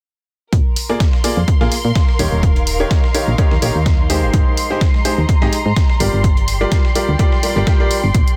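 A clear, boxy grand piano carries the riff in this euphoric, feel-good piano house excerpt, its short-sustain phrases pumping against the beat and trailing dub echoes from 0.9 s. Underneath, a punchy, tape-warm electronic kick sits up front at 126 BPM in 4/4 with a light 16th-note swing. A round, mellow FM bass pumps with the kick, and a gritty, sampler-style soul kit adds filtered hats and a medium-tuned snare beside a separate analog electronic hi-hat. A silky, detuned sawtooth string pad, bright with ensemble chorus and vibrato, holds sustained chords alongside a dark, woody bowed string section that lends lush texture in the background, both breathing with the sidechain. The harmony moves through Bb7, Eb7, Abmaj7 and Gm7 in a dry, dense and heavily limited modern mix.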